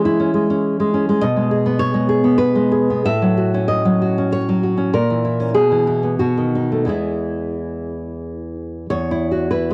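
A lone nylon-string guitar opens the recording, fingerpicked and up front, on a C#m/E chord that leads into a tender, romantic passage for solo classical guitar in E major. The piece moves in 3/4 with a rubato feel, its tempo drifting between 86 and 104 BPM as the harmony passes through G#m/B, F#m7/A and a brief A#dim before settling onto E/B, B7 and a resolving E chord at 6.9 seconds. The guitar spans E2 to E5, and its acoustic tone is warm. A moderate spring reverb and a small room ambience surround the playing, while the cassette tape character gives it the feel of a home recording. The passage ends on an E5 at 8.9 seconds, a short fragment cut from a longer piece that lasts just under 10 seconds.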